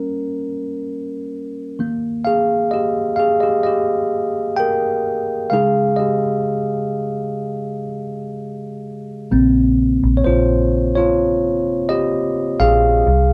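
A bell-like tine electric piano opens this pop ballad, playing alone for the first 9.3 seconds with a bright, clean and direct tone that carries a longing, emotional mood. Its chords move from Gdim to Eb and then to Dbsus2, spread across a range from Db3 up to G5 in a steady 4/4 with a straight feel. At 9.3 seconds a vintage muted fingered electric bass enters beneath it, dark, round and punchy, with an amped, foam-muted character that stays low between Bb1 and C2. The harmony settles on Bbmadd9 as the two parts play together, both sitting up front in the mix, until the excerpt, cut from a longer piece, ends at 13.3 seconds. A moderate small-room ambience surrounds the players, giving the sense of a band performing live in one room.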